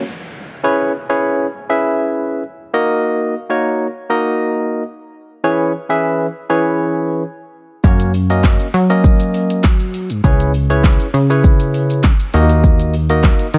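A straight 4/4 groove drives this short dance-pop excerpt, cut from a longer piece, with a bittersweet yet confident mood. It opens on a bright, barky tine electric piano with a sidechain pump, while a faint electronic downlifter sweeps underneath for the first 3.0 seconds. At 7.8 seconds a deep house drum kit arrives up front, layering a deep kick, a fat snare, handclaps, hi-hat and shaker. A plucky analog bass enters at the same moment, punchy and funky, with sawtooth and square-wave tones, ring modulation and a fast-attack filter pluck that decays, pumping with sidechain compression. The harmony moves through minor-seventh and minor chords before lifting to F#, and the dry, close mix keeps every listed part crisp and present.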